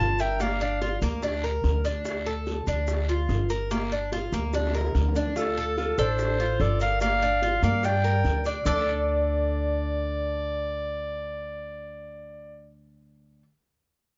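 A mellow, softened recording with light reverb carries this nostalgic Cuban son and guajira piece in D minor at 145 BPM, where a woody, dark pizzicato upright bass and a picked, double-strung Cuban tres with some octave-doubled strings sit up front, while a clear, smooth-topped classical clarinet solo with plate reverb and a nasal, metallic slide lap resonator guitar played with fingerpicks sound briefly at the start and then return at 5.4 seconds after a drum fill, with tight, high-tuned bongos played by soft hands, a raspy guiro and grainy maracas murmuring in the background until 8.8 seconds.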